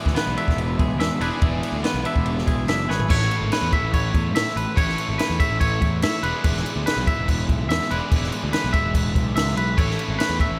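A straight 4/4 pulse comes from a dry, up-front compact cocktail drum kit with a punchy kick, high-tuned snare, dark cymbals and toms, and a drum fill at 2.9 seconds leads this intricate, wistful math rock and midwest emo excerpt from its opening E7 into Aadd9 and E. A biting, double-tracked overdriven guitar plays the riff with slapback echo, over a fuzzy, overdriven picked electric bass. A clean twangy electric guitar adds accompaniment with spring reverb and slapback until 3.1 seconds, while a second, compressed twangy guitar sits in the background with high arpeggios treated with subtle chorus, tape echo and slapback, all in a small room with light reverb.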